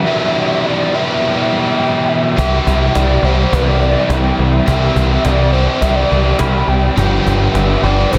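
Blissful and dreamy, this short excerpt cut from a longer rock piece leans into shoegaze and dream pop, with a straight 4/4 feel and a mix soaked in huge ambient reverb. A biting, overdriven electric guitar sits up front from the start, picked and double-tracked with a subtle chorus, carrying the riff over chords moving from Em to C and arriving on G5 near 7.0 seconds. Floating in the background, a pure, round sine lead sings the melody with a fast attack, long sustain and vibrato, dressed in chorus and a diffuse ambient delay. At 2.4 seconds a growling picked electric bass enters, bright, punchy and overdriven, alongside a snappy acoustic cajon with snares that stays tucked back in a live room. The result is hazy and enveloping, with the grit of the guitar and bass glowing beneath the soft shimmer of the lead.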